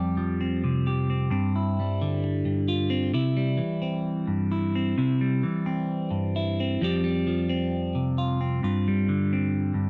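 A lone clean electric guitar opens this short highlife excerpt, its bright, twangy picked tone sitting up front with a touch of phaser coloring the sound. The mood is warm and carefree, moving at a brisk 132 BPM in a straight 4/4 feel in C major. The guitar covers a range from F2 to G4, outlining a suspended Fsus2 to G7sus4 movement before settling onto a C chord at 3.1 seconds. From there it drifts back through Fsus2 and G7sus4, leaving the phrase open-ended as the clip stops at 9.9 seconds. The recording is dry and close in a 1970s studio style, with only light reverb around the guitar.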